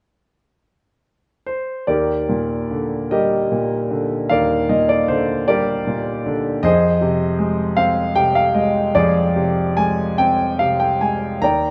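A clear, up-front concert grand piano with a deep bass and natural tone plays alone in this peaceful, calm classical excerpt in Eb major, unfolding in a lyrical, rubato 6/8 at roughly 48-54 BPM with light reverb, entering at 1.5 seconds and moving from Ebmaj7 at 1.9 seconds to Fm7 at 6.6 seconds across a range from Eb2 to Bb5.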